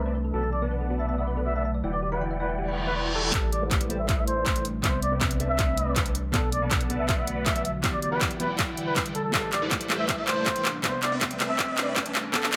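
Future bass at 160 BPM in a half-time feel, dreamy and lush in A dorian, where a veiled, bucket-muted trumpet carries a soft classical-style melody through tape echo over huge detuned supersaw chords with phaser, an ethereal pad, a thick saturated sub bass and a tine-like FM pluck whose arpeggios end at 3.3 s, when a dark, clean electric guitar, a punchy electronic kick and an up-front dubstep kit with handclaps and hi-hat arrive after a faint reverse cymbal and riser, launching a filter-swept build-up with sidechain pumping through chords moving from Bm7 and Em7 to Am11 and Cmaj13.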